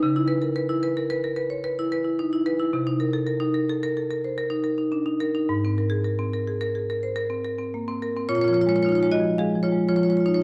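Contemporary classical music for solo marimba, this short passage cut from a longer piece has a reflective, hypnotic mood. It moves at 111 BPM in 5/4 with a rubato feel, centered in Bb minor. The marimba, played with medium hard mallets on rosewood bars, sounds woody, bright and percussive, sitting up front as it ranges from Ab2 to F5. Its harmony drifts from Dbm7 through Cm7 to Abadd9, and a new section opens at 8.3 s on Bbm7 before the passage ends at 10.4 s. The playing rings out in a stone room with a reverb of 1.1 seconds, wrapped in a dark production.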